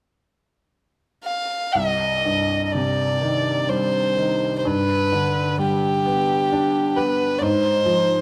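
Celtic folk slow air in a rubato 3/4, haunting and mournful, where a single close, woody fiddle with light vibrato and portamento enters alone at 1.2 seconds to carry the dark melody, joined at 1.7 seconds by a soft, felt-muted upright piano whose mellow, intimate accompaniment carries audible action noise, both up front in a moderate concert hall reverb in this short excerpt cut from a longer piece.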